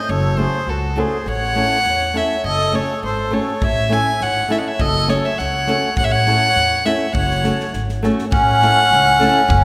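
Fiery and bittersweet, this short cut from a longer Balkan wedding-band folk piece moves at 102 BPM in a swung 2/4, circling between F#m and A. An up-front violin carries the melody with a nasal, gut-string tone and an airy bow, played by one player in a period style. Beneath it, a close-miked accordion plays a sweet, reedy second line with a light tremolo tuning, while a woody pizzicato upright bass holds the low end. A fingerpicked flamenco guitar adds acoustic accompaniment from 0.4 seconds, and an acoustic drum kit with a punchy kick and medium-tuned snare enters at 3.6 seconds. A moderate concert hall reverb gives the recording the spacious ring of a church or hall.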